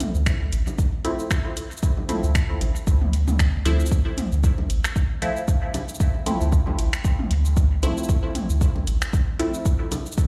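A swung 115 BPM groove in 4/4 opens this nocturnal, meditative dub techno excerpt in D minor, with a deep, up-front, tape-warm electronic kick and a layered deep house kit of metallic hi-hats, cabasa and finger snaps. Sidechain-pumped electronic toms and bongos, re-recorded in a small room, join a round, soft triangle-and-square sub bass. From 1.0 s a muted, dark, detuned sawtooth chord stab on Dm9 plucks through phaser, cassette grit and dub echo, and the whole mix sits inside the large reverb of a bare room.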